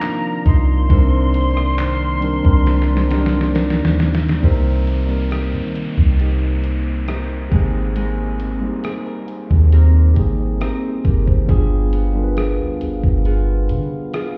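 A moody, longing slice of contemporary R&B opens with a breathy, bright jazz flute melody with vibrato and tape echo. It floats over mellow tine electric piano, fingerpicked nylon-string guitar arpeggios with finger squeak and tape echo, and a French horn section holding chords with light vibrato in the background, while a very quiet glassy bell and a round, dark 808-style bass soon join. The flute falls silent at 3.5 seconds, and after a fill from the crisp 8-bit drum machine, with its thumpy kick, snare, rim click, hi-hat and handclaps, an electronic downlifter enters at 4.4 seconds as the chords move from Cm7 through Abmaj9 to G7b9, all heard muffled as if through a wall into a stone room, with drums and bass up front.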